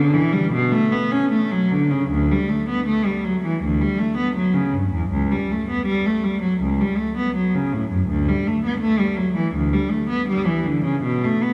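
A lone bowed cello opens this short excerpt from a longer piece, a baroque-style suite movement in D major written for unaccompanied cello. The mood is grave yet flowing, set at 81 BPM in 4/4, though the beats are uneven and the phrasing breathes with rubato. The single player's tone is clear and focused, shaded with vibrato, and ranges from C#2 up to C#4. The cello sits up front while also sounding somewhat distant, carried by a wet church reverb with a long 3.2-second decay. The overall production is dark and warm, and the passage runs to 11.5 seconds before it is cut off.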